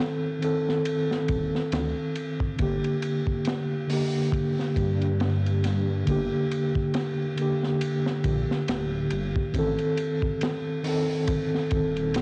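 A mellow tine electric piano with tremolo, tape echo and 12-bit sampler grit opens alongside a crunchy, gritty breakbeat kit with a tight kick, high-tuned snare and dark cymbals under cassette saturation in this melancholic, dark trip hop fragment at 69 BPM, swung on the sixteenths in G minor and moving from A diminished to G minor and back, while a deep, rumbling detuned saw bass with tube saturation enters at 1.3 seconds, all set in a moderate spring reverb with the lo-fi character of a home cassette recording.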